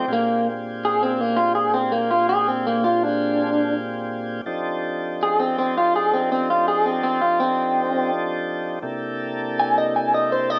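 A slow 12/8 blues with a rollicking, swaggering mood, this short cut from a longer piece features a bright, twangy, slightly broken-up electric guitar through a small old amp playing an up-front solo melody for its full 10.6 seconds over smooth, clean tonewheel organ chords turning on a slow rotary speaker with plate reverb, moving through Bb13, F13 and C13 in a wet room with a rough home-demo feel.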